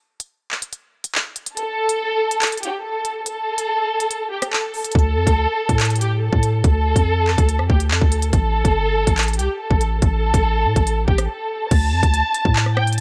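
A dark, lush violin section with expressive vibrato and portamento carries the melody over a drill kit of hard-clipped kick, crisp hi-hat, rim click, handclaps and crash, with a deep, sine-like 808 bass entering at 5.0 seconds to add long, mellow low end to this tense half-time drill excerpt in D minor at 142 BPM.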